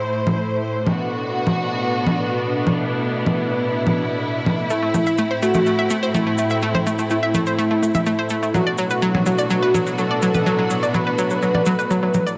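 Light reverb and studio ambience frame this melancholic, dramatic slice of melodic techno, cut from a longer piece and running at 125 BPM in straight 4/4, tuned to A4 = 439 Hz. A bowed, rich string ensemble sits up front with sustained vibrato chords, while a vintage analog drone warbles and evolves in the background, its resonant pulse-width modulation wrapped in chorus. Overdriven, layered electronic congas carry the beat from 0.3 seconds as the harmony moves between Am and Bm. At 4.7 seconds three parts arrive together: a bright, round analog pluck spinning arpeggios through chorus, digital delay and a filter sweep; a thick, bold unison lead carrying a detuned, vibrato melody through lush chorus and dub echo; and a grainy cabasa that sounds close and dry.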